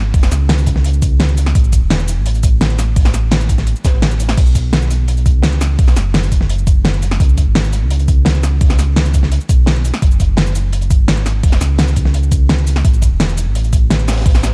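Liquid drum and bass at 170 BPM in a straight 4/4, this short excerpt carries a melancholic, dreamy mood within a dark, warm production bathed in studio reverb. A deep, full sub bass with an added octave sits up front from the very start, its sine tone sustained with a fast attack as it moves between E1 and C#2. At 0.1 seconds the drums arrive in layers: an electronic kick with a knocking, tape-warm punch placed prominently in the mix, and a produced pop kit contributing a fat snare, crisp hi-hats, cabasa and crash cymbal. Beneath them, a quieter breakbeat kit recorded in a small room adds a gritty, saturated texture, its high-tuned snare and hats smoothed by a rolled-off top and high-pass filtering. The kick drops out at 14.3 seconds while the bass and other kits carry on to the cut at 14.5 seconds.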